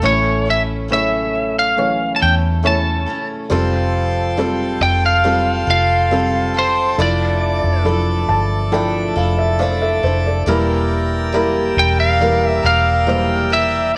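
A straight 4/4 pulse at 69 BPM carries this heartbroken, melancholic pop ballad excerpt, anchored by a dark, round, foam-muted electric bass sitting up front beneath a soft, intimate felt-muted upright piano with audible action noise and a bright, full-bodied picked steel-string acoustic guitar playing arpeggios. Over them a lightly driven, twangy lead guitar carries the melody with slapback echo, while a majestic full pipe organ enters at 3.5 seconds with brilliant sustained chords as the harmony moves from A through Fadd9 and Dmadd9/F to Edim. The piano adds a fill from 7.9 to 10.5 seconds, and a moderate echo chamber reverb gives the studio ambience a gentle sense of space.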